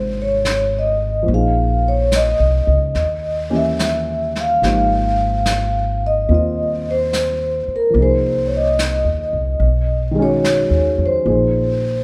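A slow swung 4/4 at 72 BPM sets this melancholic, wistful jazz ballad in Bb minor, with a vintage brush kit of snare and hi-hat entering at 0.5 s, dark and rolled-off in a small room. Up front, a vibraphone played with soft mallets carries the melody, metallic and ringing with a medium motor vibrato, while a woody pizzicato upright bass, also up front, holds the low end and a mellow grand piano with short sustain supplies chords moving from Dbmaj7 through Eb7b9 and Abmaj9 to Bb9sus4. Light reverb adds a gentle sense of space to this short section lifted from a longer piece.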